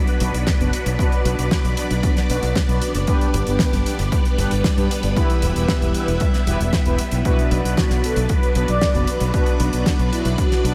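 A straight 4/4 italo disco pulse at 115 BPM in B minor drives this bittersweet, melodramatic excerpt, where a punchy, tape-warm electronic kick and a damped 70s drum kit with a fat snare and hi-hat sit beneath a bright, punchy fingered electric bass, lush phased string machine chords, and bold, wave-folded analog synth brass stabs with chorus and delay, all moving through Bm, G and Em before a round, mellow synth brass melody with a cassette tape tint enters at 7.3 seconds, the whole mix dreamy and soaked in huge ambient reverb.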